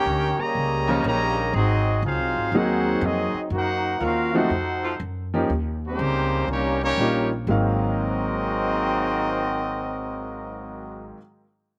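A trumpet section carries the melody up front, its warm, tight tone touched with light vibrato and a slapback echo, in this swinging, energetic big band excerpt cut from a longer piece. A mellow trombone section with a vintage character plays a second line beneath it, while a woody, growly upright bass, plucked with steel strings, sits close in the mix from the first moment. A clear baby grand piano joins at 0.9 seconds with intimate accompaniment, its long sustain and audible action noise giving it a natural presence. At the same point a dark saxophone section adds sustained chords in the background until 4.9 seconds. The harmony moves through dominant and half-diminished colours, shifting to a mixolydian flavour at 5.5 seconds, and the dry outdoor sound keeps every section direct and immediate.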